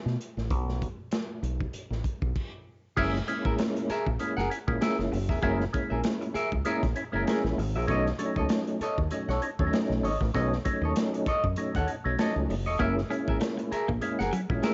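A swung 16th-note groove at 98 BPM drives this strutting funk excerpt in F# mixolydian: gritty, saturated breakbeat drums with a tight kick and dark cymbals sit up front beside a round, punchy fingered bass, with a brief stop just before 3.0 seconds. At that point a bright, clean semi-hollow guitar with phaser and a mellow tonewheel organ playing percussive stabs through chorus vibrato and a slow rotary speaker enter together, and at 12.8 seconds a clean electric guitar riff joins further back. The whole small-room home cassette recording carries light reverb and a rolled-off, dusky top end.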